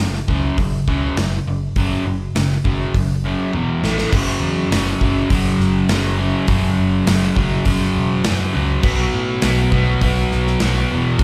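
A straight 4/4 hard rock groove carries this menacing, heavy live club excerpt, where an up-front, double-tracked overdriven semi-hollow guitar riff and a growly, punchy picked electric bass drive power chords from F#5 through E5 and A5 while a gated 80s drum kit with bright cymbals and a punchy kick rolls through a fill from 3.5 to 4.1 seconds into the second section, all heard through the venue's PA in a small reverberant room.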